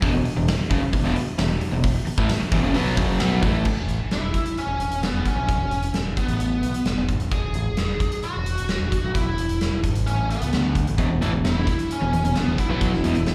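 Classic rock at 131 BPM in E major, confident and driving, heard as a live club gig through the venue's PA with light reverb. A warm, picked semi-hollow guitar with spring reverb and a bright, cranked stack guitar set further back play the riff together from 0.0 to 3.7 seconds and return at 11.0 seconds, over a growling, overdriven fingered bass and a big, natural-sounding drum kit with a punchy kick and medium-tuned snare. From 4.1 seconds a bluesy, distorted lead guitar with slapback echo carries the melody up front.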